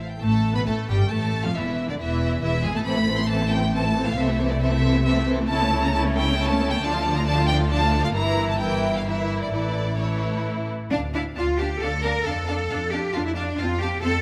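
Heard in a moderate scoring-stage reverb, this dramatic, urgent excerpt from a quick classical-period movement for string orchestra in 3/4 moves with a rubato feel. A rich, smooth violin section carries the melody over a focused second violin line, with distant violas in accompaniment and a lush, close cello section joined by expressive double basses on the bass.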